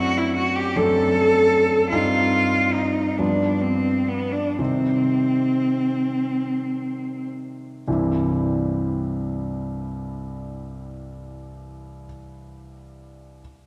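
The sound is wet and reverberant, with the long decay of a church or concert hall, around this fragment of a yearning, elegiac romantic classical duo in a rubato 6/8 at 34-52 BPM that slows through its opening section. A rich, focused bowed cello with vibrato carries the melody up front until 7.3 seconds, while a clear, intimate grand piano accompanies with long sustain and audible action noise, continuing alone until 13.4 seconds. The harmony moves from D7/F# through Cm/G and G7 to C minor before settling on a C major chord.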